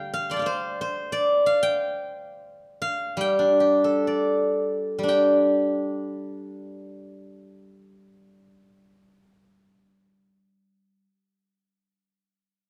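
A steel-string zither opens this flowing, serene excerpt of Chinese traditional music and carries it alone, plucked with fingerpicks and placed up front. Its silvery, ringing tone spans a broad register, from low notes to high, glinting ones. The playing moves freely in a rubato two-beat metre, and from 1.8 seconds it slows, settling into a new section at 5.1 seconds. Light reverb surrounds the bright strings, while the overall production leans dark. The zither plays through to the close at 11.1 seconds, leaving a calm, unhurried impression.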